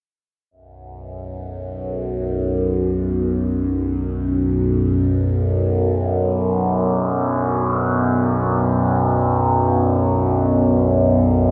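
This dark ambient drone moves in free time, unsettling and ominous, centred on a B minor chord and tuned to A4 = 439 Hz. An overtone-sweeping drone opens at 1.0 seconds in the low register, a resonant blend of sawtooth and sine with moving overtones, slow attack and long release, coloured by chorus, phaser and its own built-in reverb and sitting up front. At 5.2 seconds a deep, moody pad fades in behind it with sustained chords, its detuned unison sawtooth, sine and sub octave giving it a dark, shadowy weight, softened by chorus and built-in reverb. The whole piece sits in a huge, wet ambient reverb with a 7.2-second decay that stretches every sound into a murky haze. Both parts hold until the cut at 11.5 seconds, as this passage is taken from a longer piece.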